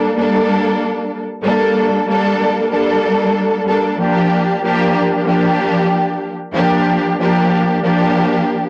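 This reflective, gritty hip hop excerpt features a lush symphonic string section playing alone from 0.0 to 8.7 seconds over a swung sixteenth-note feel. The bowed ensemble sits up front, expressive with vibrato and portamento as it moves from a Gmadd9 chord to Bb6 at 4.0 seconds. Cassette tape colouring and light reverb give this home recording its grainy, intimate character.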